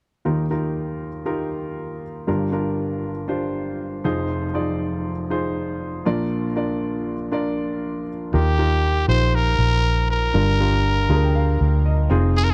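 Hopeful and anthemic, this pop excerpt in Eb major moves at 119 BPM in a straight 4/4, opening with a concert grand piano alone, its tone deep in the bass with short sustain, over a progression built on Ebadd9, Gm7, Fm7 and Bb. At 8.3 seconds a raspy, growling trumpet takes the melody with light vibrato, joined by a round, foam-muted fingered electric bass that sits dark and punchy up front, while the piano adds a fill from 10.8 seconds. The sound is a dry, close 1970s-style studio recording with little reverb.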